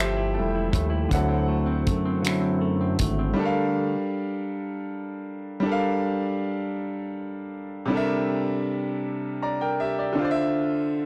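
This is a slow, sultry late-night R&B fragment in 6/8 at 53 BPM, in G dorian, cut from a longer piece. It opens with a clear, boxy grand piano taking the lead over Fmaj9 and D7. A damped 70s drum kit with finger snaps, hi-hat and a tight kick sits up front alongside a smooth sawtooth synth bass with tube saturation and vibrato. A clean, compressed semi-hollow electric guitar adds a fingered second line with a warbly pitch drift. The drums stop at 3.2 seconds, the bass at 3.3 seconds and the guitar at 4.0 seconds, leaving the long-sustaining piano alone through Gm9, C13 and Dm9 until 11.1 seconds. The recording is dry and gritty, touched with light reverb.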